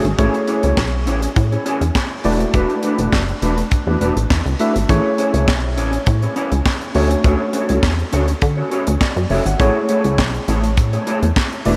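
Tine electric piano, mellow electric guitar, plucky analog bass and a tight funk drum kit all start together in this smooth, danceable excerpt of early-eighties boogie funk at 102 BPM in A major, moving through Amaj7, E9sus4 and Dmaj7 chords. A punchy, wave-folded synth bass with a filter pluck and fast attack sits up front beside the drums' high-tuned snare, handclaps, hi-hat and punchy kick, while the worn, slightly out-of-tune piano provides accompaniment and the dark, fingered guitar plays a riff through an ensemble chorus. The whole mix is soaked in a huge ambient reverb, giving it a dreamy haze.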